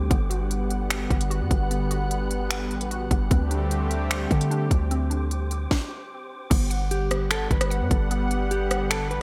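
Up-front trap drums, with a hard-clipped kick, sharp snare, crisp hats, finger snaps, rim clicks and crash under gated reverb, anchor this floating, dreamy cloud-rap excerpt at 150 BPM in a half-time feel, over a deep, boomy 808-style bass and a smooth, detuned sawtooth pad that pumps with sidechain and chorus through Gmaj7 and D7sus4 in G major. A hollow, bouncy square-wave pluck plays arpeggios with chorus and delay in the background, while an airy, breathy wind-like noise texture drifts above. After a stop from 5.7 to 6.5 seconds, a dark, clean fingered electric guitar enters at 6.9 seconds with a delayed melody, all set in light digital ambience with a bright 1980s-style sheen.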